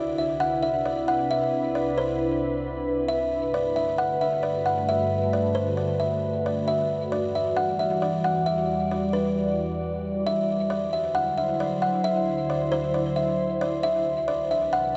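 Hip hop instrumental at 134 BPM in 4/4 with a half-time feel, hazy and melancholic in mood, cut from a longer piece. A buzzing kalimba carries the melody between B4 and F#5, its plucked, woody tone close-miked and ringing, shaded by a low-pass filter and tape echo. Beneath it, a glassy FM pad holds sustained chords from C2 up to D5, its slow attack and long release giving an ethereal, dark cushion thickened by ensemble chorus and built-in reverb. Both parts sit up front and play throughout the roughly 15 seconds, inside a huge ambient space whose reverb tail stretches to 9.4 seconds. The harmony drifts from Cmaj9 through Gmaj7 and Em9, then shifts to a new section at 10.3 seconds on D7 before settling back on Cmaj9.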